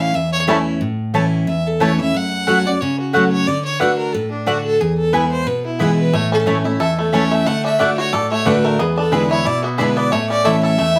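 A clear, focused fiddle carries the melody up front with light vibrato and a touch of plate reverb, over a bright, full-bodied picked dreadnought guitar in this driving, lively bluegrass cut from a longer piece. A woody, double-strung mandolin adds stabs from 0.5 seconds, while a twangy banjo played with fingerpicks flickers in briefly before returning at 6.1 seconds with percussive arpeggios. The swung groove moves through A, F#m, D and E before resolving through E7 back to A, all in a moderate studio room.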